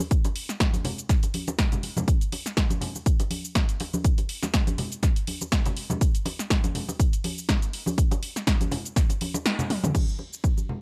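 A lightly swung sixteenth-note groove in four drives this hypnotic, deep house excerpt, cut from a longer piece. A punchy, up-front electronic kick anchors the pulse, its layered, produced tone carrying a tape-warm edge. Around it, an analog drum machine supplies a punchy snare, hi-hat, shaker, crash cymbal and toms, sitting close to the front with a tape-warm analog character. Low-tuned acoustic congas, struck with hard hands and recorded close, ring through the mix with a pumping sidechain breath. The whole groove sits in a digital ambience. Near the end the kick drops out at 9.5 seconds on a band accent, and a drum fill follows at 9.7 seconds.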